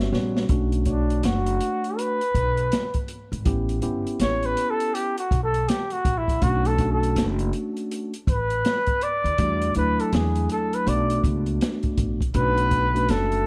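A swung 81 BPM jazz-hop groove in B minor sets a smoky, mellow mood, as an open jazz drum kit with a boomy kick and a thumpy, woody pizzicato upright bass sit up front beneath clean tine electric piano chords moving from Bm9 through A7 and Em11, while a veiled, breathy bucket-muted trumpet takes a whispered solo from 0.5 to 12.3 seconds before a very quiet trombone with vibrato returns at 12.4 seconds in this short cut from a longer piece.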